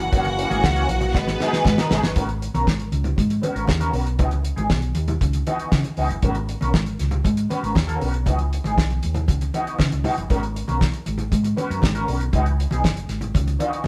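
Danceable and driving, this short disco cut from a longer piece moves in a straight four with a live-band feel, the players sharing a moderate stone room. It opens on a brief introductory section where a lush, bowed string section carries a second line and a dark French horn section holds distant sustained chords, both dropping out by about 2.2 seconds as a drum fill closes the introduction. From there the groove settles onto alternating G#m11 and C#m11 chords, carried by a round, hollow-body short-scale bass played with the fingers and sitting up front alongside a dry, damped 70s drum kit with a fat snare, tight kick and hi-hat. A mellow, clean electric guitar with wah fills out the accompaniment throughout. Low-tuned congas with a thick, soft-handed skin sit in the background, adding a vintage, band-limited pulse under the rhythm section.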